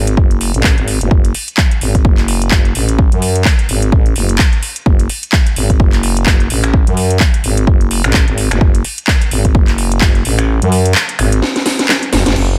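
Bass house at 128 BPM in F# minor, gritty and swaggering with a swung sixteenth feel, cut from a longer piece and driven by a thick, growling FM bass with overdrive and sidechain pumping, a punchy overdriven electronic kick up front, and an overdriven house kit of cracking snare, metallic hats, handclaps, finger snaps and crash cymbal that carries a large-room character despite the otherwise dry mix, until the kick drops out at 10.5 seconds, a drum fill enters at 11.4 seconds and the band hits an accent at 12.2 seconds.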